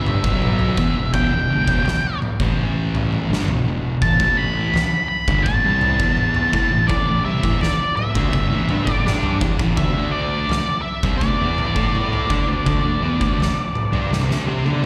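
An octave-fuzz lead guitar sings a dark, distorted picked melody up front from the very start, joined at once by two thick fuzz guitars grinding out the riff in the background and a growly, overdriven fingered bass. This brooding, heavy stoner and doom metal passage moves at 83 BPM in a straight 4/4, cut from a longer piece. Both rhythm guitars carry slapback echo, while the lead adds tape echo on top of its slapback. The harmony shifts between Em and A5 before settling on D5 near 9.8 seconds. An oversized, low-tuned acoustic drum kit enters a moment later, up front with a punchy kick, fat snare and toms in a big, pumping room, saturated and gritty, and closes on a drum fill from 14.1 seconds. The sound is that of a live gig heard through the venue's PA, with only a touch of recital-hall reverb.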